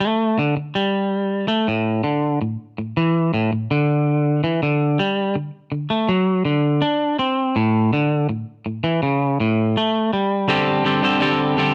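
Rock in D mixolydian at a brisk 164 BPM in straight 4/4, this short cut from a longer piece features a lone twangy electric guitar, clean and picked, sitting up front in light reverb and ranging from A2 to A4. The wistful yet carefree mood rides on a movement between D5 and A5 power chords and a D7. At 10.5 seconds the guitar shifts to a D7sus4 for a brief closing section that runs to 11.7 seconds.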